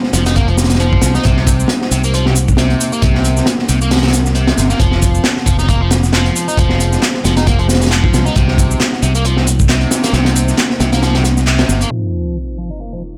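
A deep, moody pad holds sustained chords in the background from the start, pumping against a crunchy, punchy breakbeat kit with a high-tuned snare, all swung at 135 BPM in F minor for a funky, raw feel. A fingered electric bass sits up front beside a biting, double-tracked overdriven guitar riff touched with delay, while a layered electronic shaker and handclaps add tape-warm texture, moving between Fm7 and Cm7. After a band accent at 11.5 seconds, the drums and bass stop, and a sub drop and impact arrive at 11.9 seconds as the guitar sweeps through its filter to close this fragment of a longer piece.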